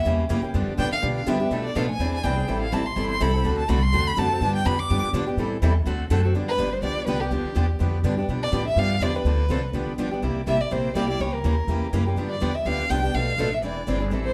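A wet club reverb, heard from further back in the room, frames this short, playful cut of acoustic string swing in the jazz manouche tradition, racing along at 248 BPM in G mixolydian with a buoyant swung feel. An up-front bowed violin carries the melody with a soft attack, expressive vibrato and sliding portamento, its tone close and intimate, and it takes a solo from 0.0 to 6.3 seconds. Beneath it, a woody, thumpy upright bass on gut strings plucks a dark, prominent foundation. Two picked steel-string parlour guitars with fresh strings supply bright, boxy accompaniment, one sitting up front and the other tucked into the background after entering at 0.1 seconds. The harmony moves through colourful changes such as C#dim7, Bm7b5 and E7alt, circling back toward G7 as the passage shifts into a new section at 6.3 seconds.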